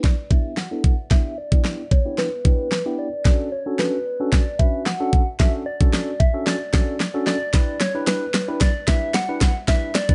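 An up-front, layered electronic pop drum kit drives this bittersweet yet confident dance-pop passage, with a knocking kick, a fat snare, hi-hat and a tape-warm finish. The whole 10.1 seconds, cut from a longer piece, plays as a build-up, with a drum fill and a filter sweep running throughout. Beneath the drums, a clean tine electric piano supplies the accompaniment through sidechain pumping and a low-pass filter, sounding as if played through its built-in speakers. Above it, a soft struck FM synth lead carries the melody between B4 and F#5, its round, gentle, keys-like sine tone doubled by a sub octave, with a fast attack and decaying notes. The lead has a warbling, vintage character from chorus, tape echo and a low-pass filter, while the harmony moves from Em7 to Dmaj7 at 3.3 seconds and back to Em7 at 7.5 seconds, all in a lightly reverberant mix with a softened top end.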